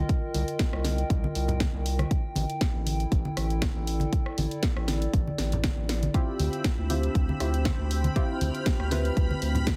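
Deep house at 119 BPM in D dorian with a light 16th-note swing, this hypnotic, deep excerpt opens with a round, dark analog bass and a warbling, lo-fi tape-like pad pumping under a punchy, up-front kick, a house kit with cracking snare, hi-hat and rim click, and low-tuned congas in the background, moving from Cm7 to A7sus4 before a drum fill at 5.9 seconds ushers in a smooth detuned analog pad, mellow filtered keys stabs with dub echo and shimmering vintage string-machine violins on Dm11 at 6.1 seconds, all under a heavily compressed, radio-like sound with little reverb.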